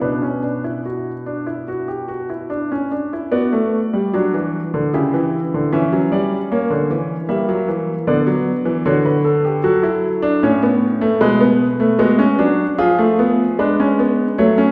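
An intimate grand piano with audible action noise and long sustain plays a joyful, elegant baroque-style three-part fugue in B minor at 76 BPM in a straight 4/4, moving into a new section at 3.3 s, with harmonies colored by diminished chords and set in a wet recital hall reverb heard from further back in the room, in this 14.7-second cut from a longer piece.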